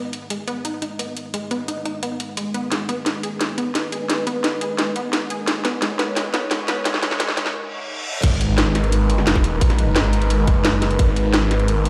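A snarling, growling distorted saw bass slams in at the drop at 8.2 seconds alongside a tight electronic kick, after a tense, mechanical build-up in this dark technical drum and bass cut, where a sweeping resonant pad with chorus and a gritty, delayed unison pluck arpeggio pump under cracking snare and metallic hats, and a reverse cymbal and impact sit in the background, all ringing in a bare stone room.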